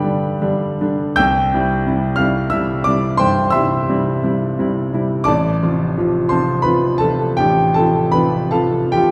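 A wet, spacious reverb surrounds this recording, placing the listener further back on a large scoring stage while the grand piano itself still sounds clear and up front, with the mechanical noise of its action audible beneath the notes. This is a short cut from a romantic classical nocturne for solo piano, nostalgic and tender in mood. The playing is freely rubato within a lilting compound metre, letting phrases breathe rather than holding to a strict pulse. The piano's range stretches from deep bass notes up into the high treble, giving the intimate, natural tone a full span against the lingering room sound. The harmony moves from G to C at 1.2 seconds, then settles onto F over A at 5.3 seconds.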